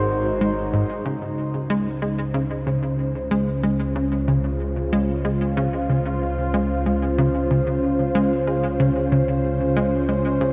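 A punchy, funky analog bass riff sits up front in this expansive, cosmic stretch of sequencer-driven space music, entering at 0.4 seconds with a fast-attack filter pluck that decays. That riff is colored by subtle chorus, a cassette-tape grain and tape echo. Beneath it, a fat, thick analog bass holds the low end with detuned sawtooth tones and a filter sweep. A sweeping, resonant pad, also up front, carries sustained chords with a slow attack and a filter swell, its detuned, vintage character warbling and evolving under subtle chorus. The harmony moves from Ab7 to Dbmaj7 at 1.1 seconds in a steady, straight 4/4 feel. The whole recording sits in a vast, echoing cathedral-like space, and this passage is cut from a longer piece.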